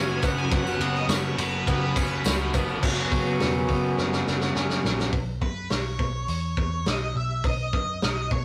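A dark octave-fuzz lead guitar carries the melody from the opening of this dreamy, hazy shoegaze and dream pop excerpt at 104 BPM. Beneath it are a swirling, warbling phased string machine, bright twangy arpeggios, a slightly broken-up guitar riff, a very quiet double-tracked overdriven guitar and a thick fuzz guitar, over a round, foam-muted picked bass on F#sus4. A jingly tambourine and a loose, gritty, up-front indie drum kit with a punchy kick enter almost at once; the string machine and tambourine drop away at 2.8 seconds, and after a drum fill the guitar riffs and arpeggios stop at 5.1 seconds, leaving lead, bass and drums on Bsus2 in a rough rehearsal-room sound with moderate booth ambience.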